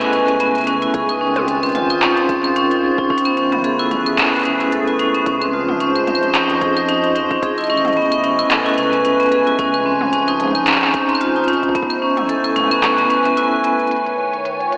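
Swung sixteenths at 111 BPM drive this wistful, glitchy IDM fragment, where an overdriven electronic kit of claves, handclaps, smooth hats and toms with tape echo plays over a deep background kick that enters at 0.9 s and a dark, rumbling detuned saw bass, while an icy, crystalline glass pad holds chorused Amaj9 and Dbmaj9 chords up front beside ringing hard-mallet vibraphone arpeggios through analog delay, a brief break arrives at 13.4 s, a bubbling stepped-filter texture surfaces at 13.9 s, and the mix is soaked in lush hall reverb with an AM-radio tint.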